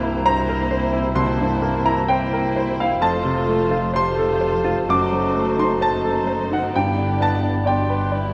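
A clear, up-front baby grand piano carries the lyrical, passionate melody of this romantic classical excerpt for piano and orchestra at a rubato 65 BPM in C major, joined by a veiled con sordino violin section on the tune, a second violin section, a hollow flute and a mellow clarinet on second lines in the background, a lush viola section on accompaniment, and dark cello and double bass sections below, the strings all bowed with vibrato in a reverberant scoring-stage space as the harmony moves from C7 through F and F#dim7 to G.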